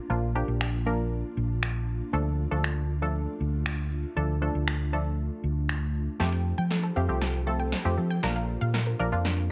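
A mellow, ethereal pad opens this energetic, driving dance-pop excerpt at 118 BPM in straight 4/4, its detuned chords softened by ensemble chorus and built-in reverb. Almost immediately a crisp, detuned wavetable chord stab and a dark, round hollow-body fingered electric bass join, both placed up front. Punchy electronic finger snaps and snare, re-recorded in a small room, arrive at 0.6 seconds and drive the groove over a harmony that moves from Bb to Dm. At 6.2 seconds the music shifts to Fadd9 and begins a build-up with a drum fill, as a lush, ring-modulated unison pluck enters with tape echo to play high arpeggios before the harmony returns to Bb. The overall sound is dry and close, cut from a longer piece.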